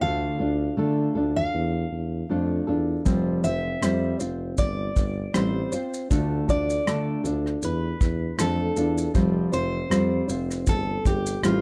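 Acoustic pop with a carefree, easy-going mood at 79 BPM and a gentle sixteenth-note swing, in which a full-bodied, fingerpicked steel-string acoustic guitar carries the melody over a dark, thumb-plucked nylon-string guitar and a warm tuba bass with light vibrato, all close and dry as the harmony moves between Dm and Fsus2, before a soft brush drum kit with a punchy kick, rim click and shaker enters at 3.1 seconds with a small, natural room sound.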